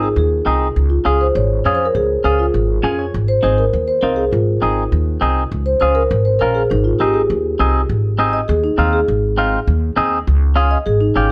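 A mellow, round soft-mallet marimba melody opens this sunny, danceable cumbia at 202 BPM in Ab major over a bright, twangy picked electric guitar with a brief fill at 2.7 seconds and a woody, thumpy pizzicato upright bass, all set in a dark production with light reverb, before the marimba takes a solo from 7.9 seconds to the close of this short cut from a longer piece.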